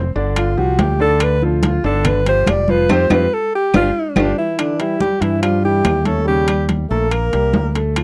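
Short-sustained grand piano and a bright, up-front fingered electric bass open this lively, sunny Afro-Cuban jazz excerpt, joined at 0.4 seconds by a close-miked alto saxophone solo with vibrato over woody background claves, soft-handed congas and ringing metal-shell timbales, before a band accent, a drum fill and a punchy, forceful trombone second line arriving at 4.2 seconds carry it into its next section, heard as a dry, close 1970s-style studio recording.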